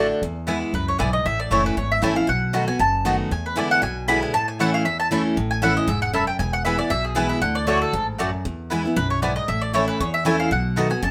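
Swung eighths in 4/4 drive this lively, joyful bluegrass passage, where a bright, full-bodied picked dreadnought guitar sits up front with the accompaniment, a double-strung mandolin, also up front, punches out stabs, a growly, thumpy pizzicato upright bass lays down a dark low end, and from 0.7 s a warm, woody second mandolin carries the melody over changes moving through E, A, B7, E7 and D, wrapped in light reverb.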